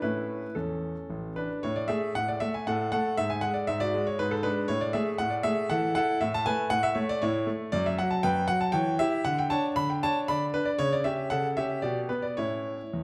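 A rubato 3/4 at 117 BPM gives this cheerful, elegant classical-period piano sonatina its gentle sway: a solo concert grand, clear and intimate with deep bass and audible action noise, sits up front in a moderate recital hall reverb, moving through colorful harmonies like Amaj7 and G#m7b5 before shifting from A major to D major at 7.7 s in this passage cut from a longer piece.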